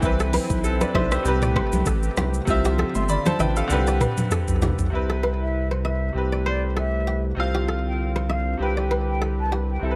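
Afrobeats with a sunny, romantic glow, this excerpt sets a bright, worn grand piano and a thick, saturated sine sub bass up front, while a smooth, detuned sawtooth pad with chorus and sidechain pumping sits in the background over gently swung sixteenths. An electronic afro-pop kit with deep kick, metallic hats, rim click, shaker and toms opens the excerpt, followed moments later by a crisp, ringing, fingerpicked kora riff with digital delay that runs almost throughout, and then by background congas. The congas drop out at 4.8 seconds and the kit at 4.9 seconds, after a drum fill that starts at 2.5 seconds. From 5.4 seconds an airy, mellow concert flute takes the melody, distant and expressive with vibrato, over a dry, close-sounding mix.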